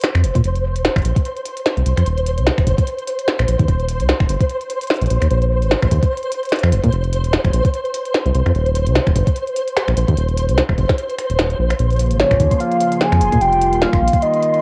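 IDM with a playful, intricate character, this excerpt moves in a swung 4/4 groove with a tape-worn, homemade feel. A glitchy kit of finger snaps, clicky hi-hats and a tiny snare runs throughout alongside a soft electronic kick, both carrying cassette saturation. Beneath them, a round, deep analog bass sits up front from the start, while a flickering, grainy granular texture shimmers high above in its own built-in reverb. Near the end, a hollow, flute-like pad enters at 11.8 seconds with chorus and 12-bit sampler grit, and at 12.2 seconds a velvety lead with chorus and tremolo takes the melody over shifting harmony that closes on a suspended chord. A moderate spring reverb and digital ambience give the whole a small, intimate space.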